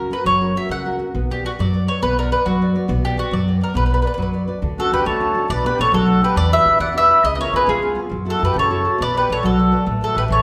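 An Italian folk serenade in a rubato 6/8 at 137 BPM opens with a round, up-front mandolin singing a romantic, wistful melody over fingerpicked nylon-string guitar with audible finger squeak and a woody, growly pizzicato upright bass, shifting from B harmonic minor to D major at 4.6 s, where a reedy, close-miked accordion joins at 4.8 s with a second line, all set in a recital hall's lingering reverb in this short cut from a longer piece.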